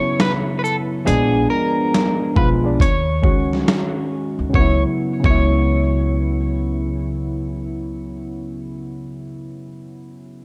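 A hazy, reflective lo-fi hip hop excerpt opens on warbly synth keys, whose pulse, sawtooth and sine tones, sub octave, filter sweep and chorus sit up front in a mellow, nostalgic haze, alongside a dark, slightly broken-up picked electric guitar carrying the melody through tape echo. A dusty, sampler-style soul drum kit of hi-hat, kick, shaker and snare comes in at 0.2 seconds, gritty and compressed with a thumpy kick and a medium-tuned snare, sounding re-recorded in a large room and placed up front. A woody upright bass joins at 1.1 seconds, plucked pizzicato on steel strings to anchor the low end. The drums drop away at 5.5 seconds, leaving keys, guitar and bass to drift over the harmony as it settles from suspended and altered colours into minor seventh chords. A moderate spring reverb and a dark, warm production wrap the whole piece in a relaxed, swung haze.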